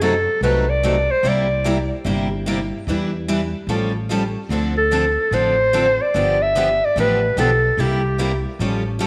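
A warm, vibrato-laden clarinet sings the up-front solo melody in two phrases, from 0.0 to 1.9 seconds and again from 4.8 to 8.5 seconds, over a playful, swinging jazz manouche groove at 147 BPM, where two bright, picked steel-string acoustic guitars (one boxy, both with audible finger squeak) provide accompaniment and a woody, thumpy pizzicato upright bass on gut strings anchors chords such as F#dim7, Em7 and Dm7, all bathed in a wet echo-chamber reverb in this short cut from a longer piece.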